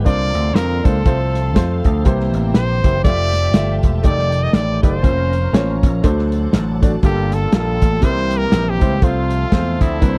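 This short cut from a longer uptempo gospel piece opens with a clear, short-sustained grand piano, a tonewheel organ, a very quiet string section and a round, punchy slap bass, with trumpet and drums joining at 0.1 seconds. The mood is reverent and soulful, carried on a swung feel in four. A trumpet with pop-style vibrato takes the solo melody, while the amped electric bass and a dark, rolled-off soul drum kit sit up front, the kit's hi-hat, kick and medium-tuned snare sounding smooth and small-roomed. In the background, the full organ holds sustained chords through a fast rotary speaker with chorus vibrato and key click, and the lush bowed strings add expressive portamento beneath. The harmony moves through rich extended chords such as C9sus4, Fmaj9, F13 and Gm9 before settling on F/C at 9.0 seconds, all captured in a dry, close, 1970s-style studio sound with little reverb.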